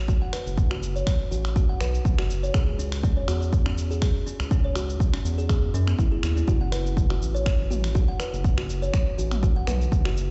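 A punchy, up-front electronic kick drives this hypnotic, spiritual afro house groove at 122 BPM in 4/4 with a light sixteenth-note swing, while a layered house kit adds cabasa, finger snaps and toms underneath. A round, deep, wave-folded analog bass pumps against the kick, and a woody, close-miked kalimba plays dry thumbnail-plucked arpeggios through a digital delay. The harmony moves from F# minor to C# minor at 2.5 seconds and returns at 6.5 seconds, all heard as if through a big sound system in a bare stone room with a dark, dulled top end.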